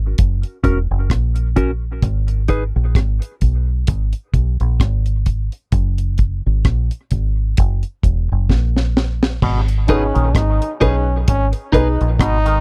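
Dub reggae at a slow 65 BPM in G# minor, this deep, heavy passage from a longer piece rides a gently swung 16th-note feel over chords moving between F# and G# minor. A round, foam-muted fingered electric bass sits up front, low and punchy, beside a dry, smooth reggae kit with a tight kick, a high-tuned snare, rim clicks, hi-hat and crash. A clean, picked electric guitar, compressed and low-pass filtered with dub echo, appears briefly near the start and again later. After a drum fill at 8.5 seconds, a hollow, nasal auto-wah clav enters at 9.4 seconds with overdriven arpeggios trailing dub echo. At 9.9 seconds a bright trombone with light vibrato adds a second line while a worn, woody, slightly detuned upright piano punches in boxy stabs, both carrying dub echo. The recording is a dry, close, 1970s-style studio sound with little reverb.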